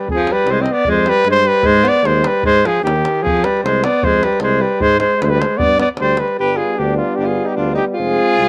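A short, restless and fiery cut of Balkan brass band folk at 152 BPM in 2/4 opens with a mellow cornet carrying the melody up front with light vibrato and slapback echo, a distant, roomy alto saxophone with vibrato on the second line, and a tight davul, while a tuba with a smooth top takes the bass. The davul drops out at 6.3 seconds, and at 6.4 seconds a clear, soft-edged trombone and a euphonium set in the background join as accompaniment, both with slapback echo. The outdoor recording is dry, with little reverb.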